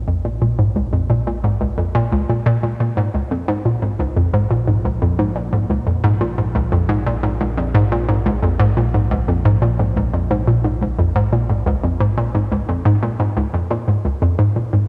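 A soft, mellow analog drone of evolving sawtooth and pulse-wave tones, shaped by pulse-width modulation and a moving notch, opens this cosmic, hypnotic piece of ambient, sequencer-driven space music. It is joined almost at once by an up-front, hollow, bouncy square-wave pluck riff with detuned, wave-folded edges, chorus and delay, all set in a lush hall reverb with a cassette-tape character until the harmony falls away at 13.7 seconds, shortly before this fragment of a longer piece is cut.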